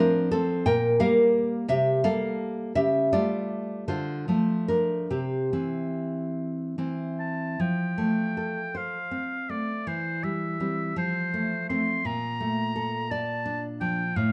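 This romantic duo for oboe and classical guitar moves at a slow, rubato pace of 47-60 BPM in dotted quarters, in a lilting 6/8 and the key of F major, with a warm, serene mood. The nylon-string guitar opens alone at 0.0 seconds, fingerpicked with a full-bodied, deep classical tone that spans from low bass notes to high treble and carries the accompaniment throughout. At 7.2 seconds the clear oboe enters as the solo voice, singing the melody in a classical style with a light vibrato. The harmony flows from F through Gm7/Bb, A7/C# and Dm7 before settling back on F, and closes on a Bbmaj7 color. Both instruments sit up front, captured by close, detailed microphones with a light reverb that keeps the sound intimate and warm. This excerpt is cut from a longer piece.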